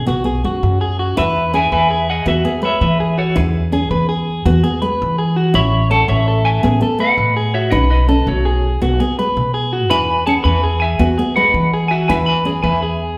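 Bathed in the wet reverb of a large studio where the band plays live in one room, this carefree, danceable highlife passage in 12/8 pairs a thumpy, woody pizzicato upright bass and a warm, fingerpicked classical nylon-string guitar with a bright, compressed, slightly broken-up electric guitar picking twangy arpeggios, and at 1.2 s a clean, picked electric guitar with tremolo enters to carry the melody over a sunny Eadd9, Aadd9 and Badd9 progression that settles back home on E.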